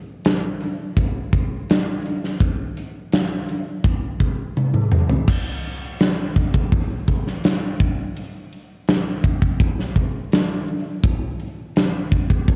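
Cathartic and dark, this short rock passage, cut from a longer piece, is carried entirely by a big acoustic drum kit in a steady, straight 4/4. The kit sits up front with a dark, smooth character and the sense of a big room, its punchy kick and medium-tuned snare anchoring the groove while hi-hat, toms and crash cymbal fill out the pattern. The drums come in at 0.2 seconds, and a fill from 4.6 to 5.3 seconds leads the music out of its opening section into a second one that runs to the end at 12.6 seconds. A cassette tape coloring lends the kit a homemade tone, matching the light reverb and the home-recorded feel of the whole take.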